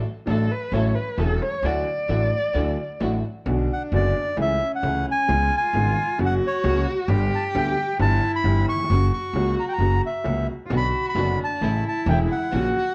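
Tango in a passionate, melancholic rubato, where a dark, bowed cello with vibrato carries the opening over growly, steel-strung pizzicato upright bass, clear upright piano with audible action noise and long sustain, and warm, smooth-topped stabs from a studio string section set in the background, until a reedy, mid-forward bandoneon takes up the melody at 3.7 s, the sound wrapped in light reverb and the worn, warbly pitch drift of old cassette tape.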